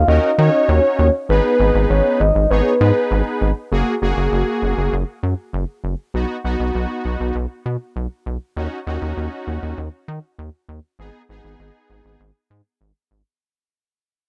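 Synth-pop at 99 BPM in a straight 4/4, this short cut from a longer piece feels upbeat yet wistful, with a dry, rough home-demo sound. A soft, octave-layered synth lead carries the melody only until 3.4 seconds, its round, dark tone coloured by chorus, tremolo and tape echo. Underneath, a rubbery square-wave bass sits up front with a bouncy, hollow filter pluck, running through to 13.2 seconds. Analog synth brass fills in the accompaniment with a fat, detuned sawtooth character, a vintage warble and a touch of chorus. The harmony moves from D#m7 and G#m into F#add9 and B before circling back, and from 3.7 seconds the music fades out.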